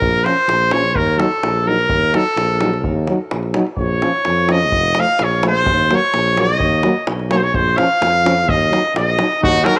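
Balkan brass band folk in a fiery, virtuosic mood, this short clip features a bright, up-front trumpet soloing over a mellow tuba bass, a deep davul, and a euphonium and smooth-topped trombone with light vibrato sitting in the background, all in a small room with light reverb, until a soft-attacked flugelhorn slips in with a second line at 9.4 seconds.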